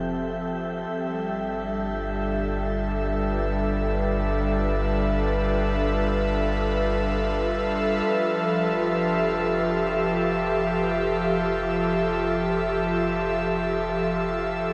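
A bright, breathy pad opens this peaceful ambient excerpt in free time, its chorused chords shifting from Fmaj9 to G13 under a filter sweep while a round sine sub bass and a mellow, wind-like noise texture fade in behind it, until the texture drops away at 8.1 seconds and the harmony settles back on Fmaj9, heard through a spacious concert hall reverb with cassette tape coloring.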